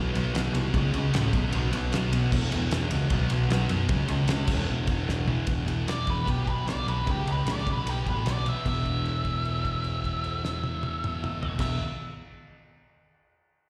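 Garage rock with a raw, swaggering mood at 151 BPM in E major, this short excerpt from a longer piece opens with a thick, double-tracked fuzz guitar riff driving over a round, overdriven picked bass, while a cloth-damped drum kit thuds along with a fat snare, tight kick and dark cymbals. A brief drum fill at 5.1 seconds leads into a new section, and at 5.9 seconds a dark octave-fuzz lead guitar enters with slapback echo on top, settling into a held note from 8.7 seconds as the chords cycle around B5, C#5 and E5. It sounds like a live gig heard through the venue's PA, bathed in recital-hall reverb, with the gritty, saturated drums given a rolled-off top.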